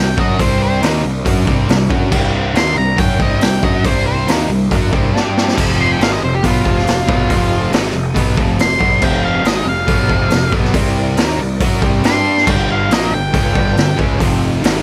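A dry sound frames this gritty, raunchy excerpt of blues rock power trio and southern rock, where a dark octave-fuzz lead guitar solos over a bright, double-tracked crunchy riff guitar, a growly fuzz picked bass sitting in the background, a boomy, saturated garage drum kit with a rolled-off top that snaps into a fill at 5.1 seconds, and a very quiet tonewheel organ holding full, slow-rotary chords through changes among C7, F7 and G7.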